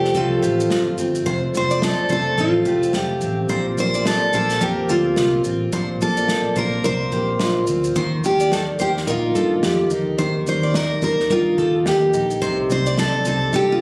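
An up-front, full-bodied picked dreadnought guitar carries the melody in this sunny, carefree acoustic pop clip with a swung sixteenth feel, over a double-tracked, fingerpicked plugged-in concert guitar accompaniment, a picked dreadnought guitar playing arpeggios through digital delay, a dark, round, foam-muted vintage electric bass, and a small-room drum kit with a punchy kick, medium-tuned snare and shaker played with bundle sticks, all moving through Fadd9, Bbsus2, Eb and Cm and captured on a phone in a room with club reverb.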